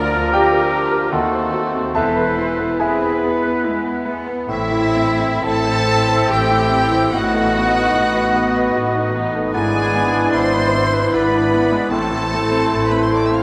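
Passionate and brooding, this romantic movement for piano and orchestra unfolds in a rubato three-beat lilt, with the warm, deep-voiced concert grand leading the melody alongside a dark, woody chamber violin section. Airy flutes, a distant oboe, a very quiet clarinet and a smooth studio violin section weave second lines in the background, while a roomy bassoon, lush violas and mellow French horn chords fill the middle and rich cellos and double basses anchor the bass. A clear trumpet adds stabs until 4.1 s, and the whole orchestra sits in the wet reverb of a scoring stage.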